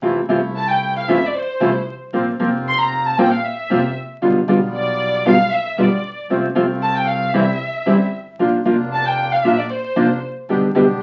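A fingerpicked nylon-string guitar, full-bodied and up front with audible finger squeak, opens this sultry, dramatic tango excerpt in a loose, rubato feel, joined from the start by dry, reedy bandoneon stabs and a distant, bowed double bass. At 0.6 seconds a close, expressive violin section enters high above them with vibrato, carrying the leading line through chords that move from Fmaj7 toward G/B. The sound is a very old 78 rpm record, with vinyl crackle, dulled top end and a wet studio reverb.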